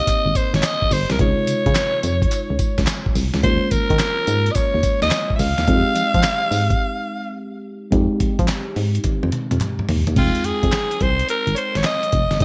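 A raspy, up-front alto saxophone carries the melody with vibrato and scooped notes over a mellow, chorused FM electric piano, a punchy, round FM bass and a gritty, compressed sampler-style drum kit with gated reverb, while a very quiet group handclap sits beneath in this bouncy, confident new jack swing R&B excerpt with bright 1980s-style digital production, a break at 6.8 s and a drum fill at 9.0 s.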